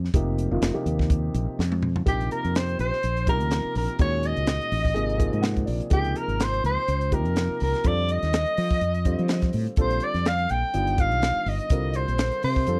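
Electric jazz fusion with a bright, soaring mood and a swung sixteenth-note feel, cut from a longer piece, opens on a round, punchy fretless bass, a crisp, polished drum kit with a high-tuned snare and tight kick, and a dark, boxy, worn-sounding grand piano, with a drum fill at 1.6 seconds leading into the next section. At 2.1 seconds a mellow soprano saxophone enters up front, its subtone, vibrato and scooped notes giving it a jazz solo voice, joined very quietly in the same range by an airy, close-miked concert flute as a second line, while the piano adds a brief fill around 5.2 seconds over shifting extended chords. The dry, close, 1970s-style studio sound keeps the bass and drums prominent.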